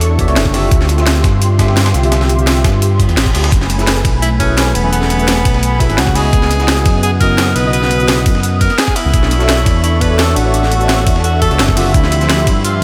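Liquid drum and bass with a melancholic, dreamy mood, where a smooth, up-front sawtooth synth bass with tube saturation anchors dark, detuned analog pad chords pumping under sidechain, deep mellow chord stabs with chorus and delay, a knocking electronic kick, a layered kit of cracking snare, crisp hats and ride, and a gritty, high-tuned breakbeat sampler kit sitting in the background, while a very quiet reverse cymbal appears at 2.9 s before a clear, jazz-style tenor saxophone solo with delay enters at 4.2 s over minor eleventh chords in light reverb.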